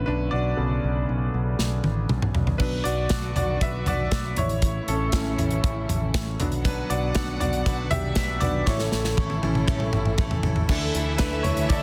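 A bright, woody upright piano leads this uplifting, piano-driven pop excerpt at 119 BPM in a straight 4/4, slightly detuned and worn, with audible action noise and long sustain up front in the mix. A picked electric bass with a direct, amped tone plays beneath it from the start. A punchy, acoustic studio drum kit with bright cymbals and a medium-tuned snare enters with a fill at 1.6 seconds, then returns with another fill before the final stretch. From 2.6 seconds, a lush bowed string section holds sustained chords with vibrato in the background as the harmony moves between B minor and A. A picked steel-string acoustic guitar adds a bright riff from 6.6 seconds, and in the closing moments a close, expressive violin section brings a second line as the chords settle on Dsus2, all inside light small-room reverb and a dense, heavily limited master.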